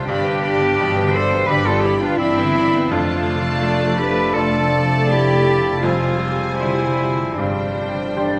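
Cinematic and uplifting, this rubato passage in 4/4 moves at around 77-86 BPM over G, Dm/F, Fmadd9 and Gsus4. A rich violin section carries the floating melody, bowed sul tasto, while the cello section sits up front on the bass line beside a close double bass section, and a clear solo clarinet and a dark second violin section weave second lines against a background of bright piano, intimate violas, ringing thumb-plucked harp and a very quiet, mellow horn section. The scoring-stage reverb is wet, and a large, airy flute ensemble touches a single D5 only at 8.2 seconds, just before the passage is cut off.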